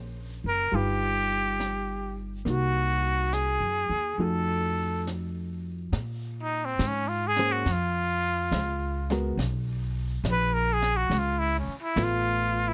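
A dark, clean hollow-body guitar and a woody, thumpy pizzicato upright bass open this wistful, smoky jazz ballad at a slow 69 BPM swing. A trumpet in a straight mute enters at 0.5 seconds, and brushes on a high-tuned snare and hi-hat join quietly in the background. The nasal, breathy trumpet sits up front with vibrato and a soft attack, moving into a whispered, intimate solo from 5.9 seconds over minor and altered dominant chords, all captured by close, detailed microphones with little reverb.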